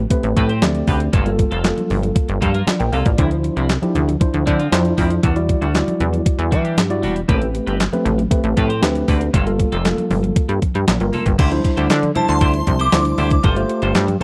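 Slick, danceable early-eighties boogie funk at 117 BPM in D minor, cut from a longer piece, where a punchy, up-front analog bass and a thumpy, overdriven 8-bit drum machine with handclaps drive a lightly overdriven, slightly out-of-tune tine electric piano, a twangy clean guitar riff bathed in lush chorus and faint ringing congas through minor-ninth chords, before a shimmering FM bell with phaser, tremolo and tape echo glints in at 12.2 seconds over the suspended chord of a new section, all in a dry, close 1970s-style studio sound.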